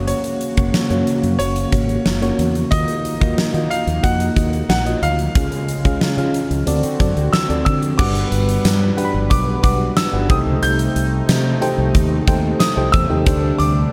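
A tremolo-shimmering FM electric piano, a bold, detuned brassy analog pad with chorus and a round, dark fretless bass open this glossy, romantic 1980s-style pop excerpt at 91 BPM, joined at once by a clear concert grand piano melody trailing delay and a huge arena drum kit with a punchy kick, fat snare, bright cymbals and tambourine, before the key lifts from F# major to G major at 8.0 s as mellow, sawtooth synth brass stabs with chorus and delay enter in the background under light reverb.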